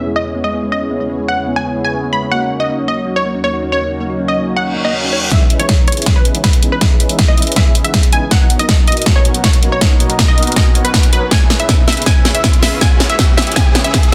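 A lush, euphoric future bass passage at 160 BPM in a half-time feel opens with a punchy, detuned unison pluck carrying the melody, roughened by vintage 12-bit sampler grit and trailed by digital delay. Beneath it, an ethereal, airy pad holds sustained chords through ensemble chorus and built-in reverb. A soft, smooth supersaw riff with a moving notch and a low-pass filter sits alongside, and a round, tine-like FM pluck adds dark arpeggios in the background. Across the opening, a filter sweep moves over the pad, and a very quiet reverse cymbal and riser arrive at 4.7 seconds. At 5.3 seconds, a tape-warm dubstep kit with a huge snare and metallic hats enters up front with a layered electronic kick, launching a build-up and drum fill while a filter sweep moves over the supersaw. A mellow, clean tine electric piano plays accompaniment through the middle until 11.3 seconds, when the thumb-piano-like pluck returns. 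Throughout, the harmony moves through E6, D#m7, C#m7 and Bmaj7 before coming back to E6. The pluck, pad, supersaw, piano and thumb-piano-like pluck pump to the sidechain, and the whole mix is dense and heavily limited, with light reverb and digital ambience.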